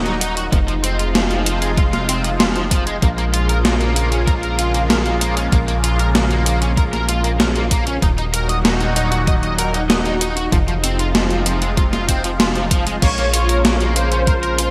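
Bright, 1980s-style digital production with light reverb and a digital ambience frames this nocturnal, cinematic synthwave excerpt, cut from a longer piece and moving at 96 BPM in a straight 4/4 in Bb minor. A lush, thick unison pad of detuned sawtooth and square waves holds sustained chords with a slow attack, colored by chorus and phaser and breathing with sidechain pumping, while a tight, punchy sequencer bass drives underneath with a sawtooth filter pluck, a moving notch and tube saturation. Up front, a gated 80s digital drum machine with a tape-tinged, sampler-style character supplies crash, hi-hat and a snare drenched in gated reverb, joined from 0.5 seconds by a knocking, overdriven electronic kick. An overdriven, double-tracked semi-hollow guitar plays a picked riff through analog chorus and digital delay. The harmony cycles through Ebm, Fm7 and Bbm7, and at 13.0 seconds a smooth, mellow supersaw melody enters with digital delay for the closing moments.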